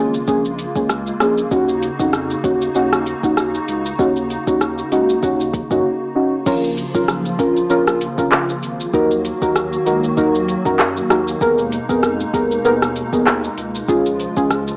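Dancehall at 97 BPM in Eb minor, this short excerpt cut from a longer piece feels tough and hypnotic, riding a 4/4 groove with a gentle swing on the sixteenths. Up front, a deep, dark chord stab with a detuned, filter-swept edge and chorus strikes and decays over minor seventh chords, moving from Bbm7 to Ebm7 before a second section at 6.5 seconds shifts through Bbm, Ebm and Abmadd9/Eb to land on Db. Beneath it, a hollow, flute-like pad warbles with a vintage ensemble chorus, its slow-attack chords pumping against the sidechain. A saturated sine sub bass sits low and thick, holding long notes, while the electronic afro-pop kit brings a deep kick, metallic hi-hats, rim clicks, handclaps, shaker and a crash, all placed up front. Light reverb and digital ambience surround the mix, and the cassette tape coloring on the stab, pad and drums gives the whole a lo-fi, small-speaker home-recording character.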